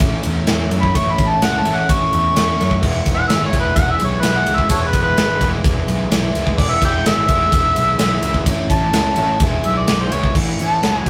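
A dark, double-tracked overdriven guitar riff pulsing with harmonic tremolo drives this swaggering, driving blues-rock and southern-rock excerpt from the first beat, together with a growling overdriven picked bass and a big, up-front acoustic drum kit with a punchy kick and bright cymbals, and at 0.8 seconds a gritty, amplified harmonica takes a solo full of tongue slaps, scooped notes and light vibrato over A and E chords in a rough rehearsal-room recording with moderate studio reverb.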